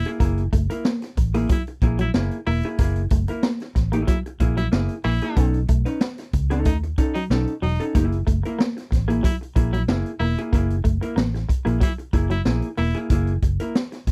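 Energetic and playful, this short funk clip moves at 93 BPM in a straight 4/4, sitting in F# mixolydian over a vamp that shifts from F#9 to B9 at 5.4 seconds and returns to F#9 at 8.0 seconds. The swinging big-band drum kit sits up front with a punchy kick, a high-tuned snare and hi-hat, sounding natural in a studio room, while the vintage muted fingered bass adds a dark, round, foam-muted low end that is also placed close and forward. An electric guitar at the edge of break-up plays a twangy, fingered riff within a narrow range, and a vintage hollow-body jazz guitar supplies clean, picked, compressed accompaniment with a warm tone. A clear baritone saxophone with vibrato carries a second line in a pop style, holding a narrow upper range. The dry, close, 1970s-style studio sound, with little reverb, keeps every part crisp and present.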